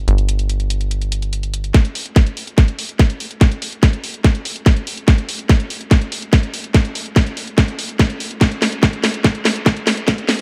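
Psychedelic trance with a psychedelic, alien mood, this short fragment of a longer track opens on a tight sequencer bass, punchy and driving, its sawtooth and square-wave tones shaped by a filter pluck and a moving notch, with a fast attack and decaying notes placed up front. A garage drum kit of cracking snare and warm hi-hats joins almost at once and carries on to the end. At 1.7 seconds the bass drops out and a tight, layered electronic kick drum takes over the low end, sitting loudest in the mix. From that point until 10.4 seconds the track becomes a build-up, with a drum fill and a filter sweep running through the whole passage. The production is dark and high-passed, with light reverb and drums that sound re-recorded in a small room.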